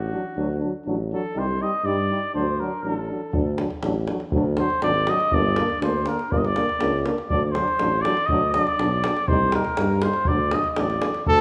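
Virtuosic yet bittersweet, this Balkan brass band fragment in 2/4 sets a vintage-toned flugelhorn with light vibrato up front as soloist over a distant, roomy tuba bass, with a euphonium and a trombone, both also lightly vibrato-tinged, held back as classical-style accompaniment, while a tight, band-limited davul joins at 3.3 seconds and a warm, up-front cornet arrives just at 11.3 seconds, the whole band heard inside a moderate recital hall reverb.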